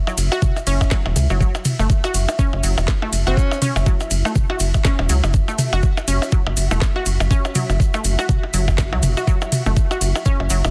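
A swung 4/4 pulse at 122 BPM drives this short cut from a longer minimal techno track, its 16ths pushed with a 58% swing and the mood clinical and quirky. An up-front, knocking electronic kick and a rubbery, hollow square bass anchor the groove from the first second, the bass pumping against the kick, while a garage drum kit adds metallic hats, ride and a cracking, softly clipped snare. Electronic percussion blips and toms carry tape echo and reverb, and close maracas sit in the background. A squelchy, detuned blip pluck plays a bright, chorused riff between F#3 and F#4 over an F#7(no3) harmony, pumping and echoing, as a cloudy granular pad holds E5 behind it and a very quiet, flickering grainy texture joins at 1.8 seconds. A clear alto saxophone appears only briefly at 3.3 seconds, scooped notes on C#4 with light vibrato trailing into tape echo, before the digital-sounding, dense and heavily limited mix carries on to the end.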